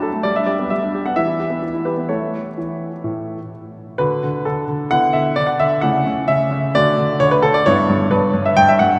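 Cheerful and playful, this brief cut from a classical-period piano sonatina in D major moves at 131 BPM in a straight 4/4, with a solo grand piano that sounds clear, intimate and up front, its action noise audible, ringing through a wet cathedral reverb with a 6.0-second decay as it shifts into a new section at 4.0 seconds.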